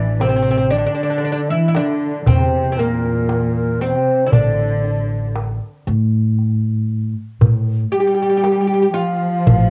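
A steady 10/8 pulse at 117 BPM, counted in eighths with a straight feel, drives this longing, melancholic Arabic maqam ensemble piece in A maqam kurd, heard as a section cut from a longer work. The fretless oud carries the melody in the middle register, its plectrum-plucked double strings sounding woody and deep and placed up front, with a cassette tape colour on its tone. A breathy, mellow ney plays a second line above it, end-blown with vibrato and a crisp attack, heard close-miked. A dark chamber cello section plays a second line below, bowed sul tasto with light vibrato and a soft attack for an intimate feel. The upright bass, plucked pizzicato on steel strings, gives a dark foundation, and the clay-shelled darbuka with a natural skin comes in at 0.2 s with a live-room sound. The whole is a home recording on cassette with light reverb and highs that stop at 10.9 kHz.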